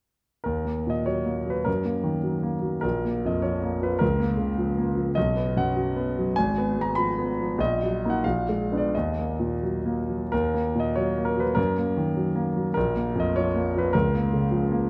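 In a rubato 2/4 that drifts between 84 and 107 BPM, this stormy, brooding romantic character piece for solo piano, cut from a longer work, places a smooth, vintage-toned concert grand with deep bass up front in a moderate concert hall reverb, tuned to A4 = 445 Hz and ranging from Ab1 to Cb6 as it circles dark Eb minor harmonies, reaches a tense Bb7b9 at 8.2 seconds, and returns to its opening material at 10.3 seconds.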